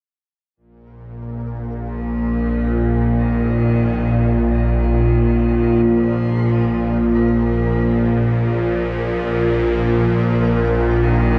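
A tense, string-like drone sits up front in this dark ambient fragment, entering at 1.1 seconds in the low register with a sawtooth edge, detuned unison voices, vibrato and a phaser, all wrapped in its own reverb. Around it, a moody analog pad holds sustained chords from 1.3 seconds, its mellow square and sawtooth tones thickened by a sub octave, chorus and phaser. A very quiet, grainy texture flickers on a single high note from 0.9 seconds. A lone bowed cello, biting and intense yet distant, carries a narrow melody through delay and fades in gradually across the passage. The production is dark and bathed in a huge reverb, giving this fragment of a longer piece a vast, ominous mood.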